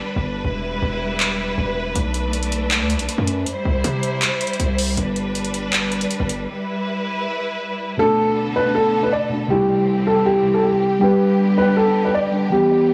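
Menacing and brooding, this half-time trap and hip hop fragment at 159 BPM in B phrygian opens with clear, lush symphonic strings holding distant bowed chords over a saturated, heavily distorted 808-style bass, while a trap kit of handclaps and metallic hi-hats joins at 1.2 seconds. At 8.0 seconds the bass and drums have dropped away, and a dark, boxy concert grand piano carries the melody through digital delay above muted, warbling felt-like synth keys treated with chorus, as the strings continue beneath. The whole recording sits in a small room with light reverb and a blown-out, overdriven sound.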